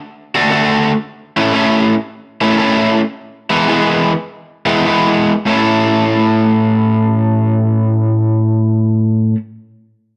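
An overdriven semi-hollow electric guitar sits up front and plays from 0.3 to 9.4 seconds, its bright, picked hollow-body tone carrying a laid-back, swaggering blues solo over a swung 4/4 feel. The passage moves through D, A and E before settling back on A, slowing down between 1.0 and 5.5 seconds. Light reverb frames the playing in this short cut from a longer piece.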